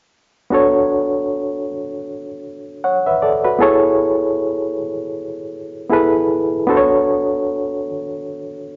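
A barky, reedy electric piano, lightly overdriven with a fast tremolo and sitting up front through its built-in speakers, plays accompaniment from 0.5 to 8.8 seconds in this smooth, silky soul excerpt at 78 BPM in 4/4 with a gentle sixteenth-note swing, moving from Bm9 to Amaj9 and back in B dorian, tuned to A4 = 438 Hz, captured live in one room with a wet stone-room reverb and a rolled-off top end.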